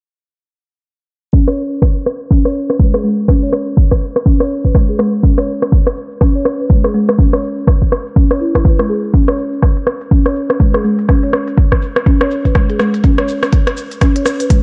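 The recording sits in a light reverb, its top end rolled off by a low-pass filter that keeps everything under 10.9 kHz. This is an excerpt of spiritual, earthy afro house in C# minor, moving at 123 BPM in 4/4 with a 59% swing on the sixteenths. From 1.3 seconds to 14.6 seconds, a folk marimba played with soft mallets spins arpeggios between G#3 and C#5, its woody, rustic, round tone heard close and up front, shaped by sidechain pumping, a digital delay and a filter sweep. Beneath it, a deep, produced electronic kick drum is placed prominently in the mix, dressed in small room ambience. An afro-pop drum kit of smooth hi-hats, rim clicks and shaker rounds out the groove in the same small room.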